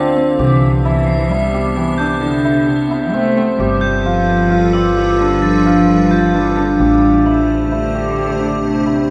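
Contemporary instrumental chamber music in 7/4 with a hypnotic, urgent mood, cut from a longer piece, built on an up-front hammered cimbalom playing ringing arpeggios over a woody pizzicato upright bass and a focused, bowed cello line with vibrato. An icy, crystalline glass pad holds sustained chords with chorus and tremolo through Cmaj7, G9 and Am7, while crotales struck with plastic mallets add a high, bell-like shimmer from 1.1 seconds. The dark production sits in a wet recital hall reverb, and the music shifts into a new section at 6.8 seconds.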